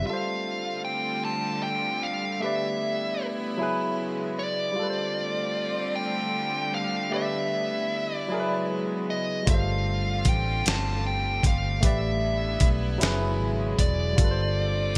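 Slow R&B in a straight six-eight, tender and sensual in mood, taken from a longer piece. A dark, smooth, overdriven lead guitar carries the picked melody up front, its tone trailed by delay, while a barky tine electric piano, lightly overdriven through a combo amp, fills in the accompaniment beneath it. A chamber string section with a rich, reedy gut-string tone holds sustained bowed chords in period style, and the harmony circles through suspended ninth chords. The foam-muted fingered electric bass sounds a brief round note at the very start, then returns at 9.5 seconds, punchy and amped, together with a gritty sampler-style drum kit whose thumpy kick, fat snare and hi-hat sit compressed and up front under gated reverb. A moderate plate reverb and a low-pass filter shape the bright 1980s-style digital production.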